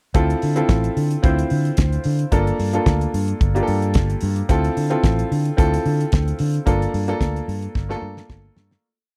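Dry and close, this short disco piece has the feel of a 1970s studio session, with little room sound around the players. A damped acoustic drum kit drives it with a four-on-the-floor beat, open hi-hats on the off-beats, a fat snare and a tight kick, all sitting up front. A fingered electric bass, dark, amped and round, plays an octave disco line beneath, moving with the harmony as it shifts between Dm7 and Gm7. A clear concert grand piano with a slightly worn character and short sustain adds syncopated, rootless chords decorated with grace notes. The mood is glamorous and driving from start to finish, until a fade-out begins at 6.7 seconds and a drum fill arrives at 7.7 seconds to close the piece.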